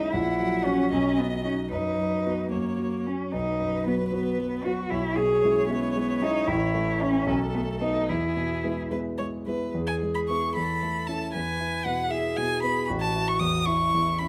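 Flowing in a rubato 6/8, this lively, graceful fragment of a quick classical-period piano trio movement places a clear, focused violin melody with vibrato up front, above a cello second line played with vibrato and portamento in a distant, expressive voice, while a warm concert grand with deep bass and short sustain supplies the accompaniment, all three playing throughout in a large studio with moderate reverb as a new section begins at 9.7 s.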